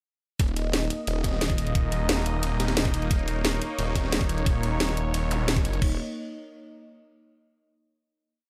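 Dark technical drum and bass at 177 BPM, aggressive and tense, this short piece hits a drop at 0.4 seconds and settles on a final chord from 5.8 seconds. A snarling, growling distorted saw bass with tube saturation and sidechain pumping sits up front in chopped phrases, while a sweeping, airy resonant pad with chorus holds evolving sustained chords beneath it. Tight technical drums with a cracking snare, a knocking layered electronic kick and a very quiet gritty looped breakbeat with edits drive the rhythm, and a brief zap at 5.3 seconds adds a transition effect, all in a digital ambience.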